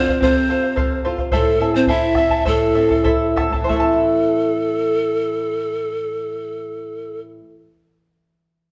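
Andean folk in A minor, earthy and wistful, moves in a straight 2/4 at 88-109 BPM and slows between 1.3 and 3.7 seconds as the chords shift from F to Am. A breathy, reedy bamboo pan flute with vibrato, a soft attack and a touch of chiff carries the melody up front, beside a dark fingerpicked flamenco guitar, while a bright, shimmering charango with double strings adds accompaniment and a clean hollow-body electric jazz guitar plays a second line in the background. A deep, close bombo sounds only until 4.0 seconds, and the ensemble plays live in one room with a large, wet studio reverb in this brief excerpt.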